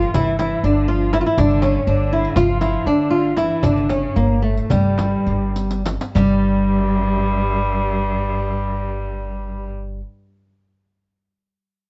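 In a straight 9/8 that gradually slows from 1.9 to 6.2 seconds, this hypnotic, melancholic excerpt from a Turkish makam ensemble puts a dark, fingerpicked flamenco guitar melody up front, with audible finger squeaks, over a bowed kamancheh gliding with light vibrato and a rich, expressive cello, anchored by a woody, thumpy pizzicato upright bass, while a crisp metal-shell darbuka, a jingling riq and a deep, very quiet frame drum keep time, play a fill from 5.6 seconds and stop at 6.4 seconds, leaving the strings in moderate reverb on a worn, warbling cassette tape.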